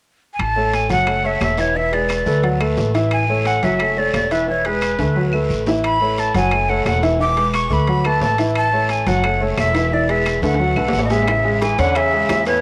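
A brisk, straight 4/4 pulse at 177 BPM drives this sunny, sophisticated Afro-Cuban jazz passage in A major, cut from a longer piece. Woody claves, a raspy guiro heard from a distance, and ringing metal-shell timbales sit in the background, with drum fills at 5.0 and 10.4 seconds, while a pizzicato upright bass with steel strings stands up front and rolls through a repeating A6, F#m7, E7, D6 cycle. A breathy, bright jazz flute carries the melody from B4 to D6 with vibrato, crisp attack and a touch of chiff, and a polished grand piano with long sustain supplies present accompaniment. At 11.3 seconds the harmony settles on Amaj7 as tight, high-tuned bongos slip in very quietly, just after a tenor saxophone enters at 11.0 seconds with a second line, its subtone, scooped notes and light vibrato adding a soft low glow. The whole is bathed in moderate spring reverb and carries the homely character of a cassette recording.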